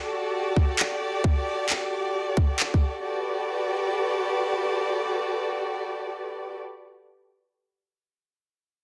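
A close, bowed violin section opens on sustained Dadd11/F# chords with expressive vibrato, pumping under sidechain compression in a bouncy yet moody two-step UK garage groove at 133 BPM with a swung sixteenth feel. A tight, layered electronic kick enters at 0.6 seconds and tape-toned analog handclaps join just after, both sitting up front before dropping out by 2.8 seconds. The strings carry on alone into a Gmaj9/F# passage, with moderate plate reverb, small-room ambience and a dense, heavily limited master.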